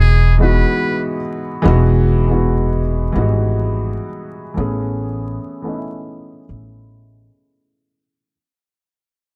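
A small room's moderate reverb and a layer of vinyl crackle frame this short, mellow, nostalgic lo-fi hip hop excerpt, which sits at 72 BPM in 4/4 with a lazy swing on the sixteenths, in E major. A metal-muted trumpet, buzzy and breathy with a light vibrato, carries the jazz-style melody only for the opening second, its thin tone trailed by an analog delay. Up front, a felt-muted upright piano plays soft, intimate accompaniment through a low-pass filter, its hammer action audible beneath the dulled notes, and it continues until the end at 8.3 seconds. A pizzicato upright bass with steel strings gives a woody, thumpy low end, sitting forward in the mix until 7.3 seconds. The harmony moves from Emaj7 to Amaj7 at 4.6 seconds, while the whole fragment fades out from 1.7 seconds onward.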